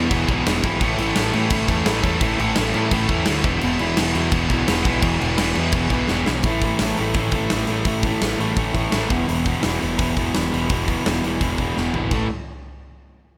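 Punk rock with an energetic, rebellious drive, where a crunchy overdriven guitar riff is joined by a compressed, distorted guitar and a bright, double-tracked high-gain guitar sitting in the background, the latter until 6.3 seconds, while a growling, round overdriven bass holds the low end and an up-front rock kit with a punchy kick and crash cymbal, captured in a stone room, plays drum fills at 6.1 and 11.8 seconds under light reverb in this short cut from a longer piece.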